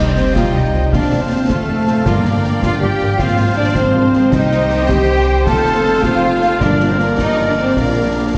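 Heard from further back in a wet scoring stage, this swashbuckling, determined cinematic adventure cue in 6/8 sets a lush, vibrato-rich violin section melody over second lines from a clear oboe, a second violin section, a mellow clarinet and an airy flute ensemble, with viola accompaniment, sustained chords from dark French horns and smooth trombones, bowed cellos and double basses in the bass, hard-mallet timpani, and a close, dry concert snare, bass drum and dark clash cymbals entering at 0.2 seconds.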